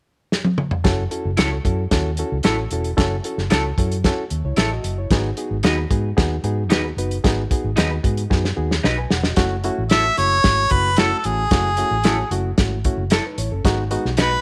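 A small, lightly reverberant room gives this short cut from an uptempo 1960s-style soul track at 112 BPM in F# dorian a tight, driving feel. A warm soul drum kit kicks off with a fill at 0.3 seconds. The dark, foam-muted fingered bass, the barky reed electric piano and the slightly broken-up, lo-fi guitar stabs with subtle chorus then settle over F#m7 and G#m7. A clear, up-front harmonica with light vibrato takes the passionate melody from 9.9 seconds.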